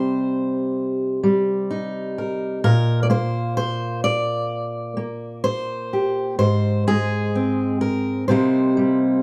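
A bright, fingerpicked steel-string acoustic guitar sits up front and plays alone in this brief, intimate folk fragment, its rubato phrasing moving through Cm7, Bbadd9 and Ab before settling back on Cm7 at 8.3 seconds, all within a dark production and a moderate studio reverb that deepen its melancholic mood.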